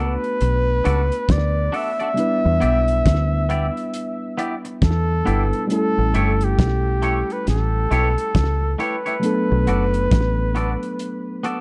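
Bittersweet and smooth, this lovers rock reggae excerpt at 68 BPM in B minor sets an up-front flugelhorn melody with vibrato and tape echo over a worn, slightly out-of-tune tine electric piano, clean twangy guitar stabs in spring reverb, a deep, round, foam-muted dub bass that stops at 10.7 seconds, and a cloth-damped, thuddy drum kit with fat snare, tight kick and slapback echo, all captured in a dry, close 1970s-style small room as the chords move from Bm7 through Em7 and A7 back to Bm7.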